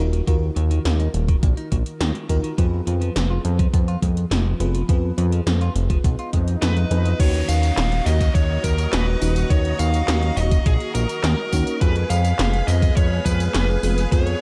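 A straight 4/4 synthwave groove of thumpy, overdriven electronic kick and 80s pad drums with a gated snare, metallic hi-hats, handclaps, tambourine and crash drives a fat, sidechain-pumped analog bass beneath dreamy FM electric piano stabs with a soft pad layer and a clean, picked electric guitar riff, until a background swell and downlifter arrive at 6.3 seconds, a dark, overdriven lead guitar takes up the melody with tape echo at 6.6 seconds, and a lush string machine spreads sustained, shimmering chords from 7.2 seconds through the rest of this nostalgic, cinematic excerpt.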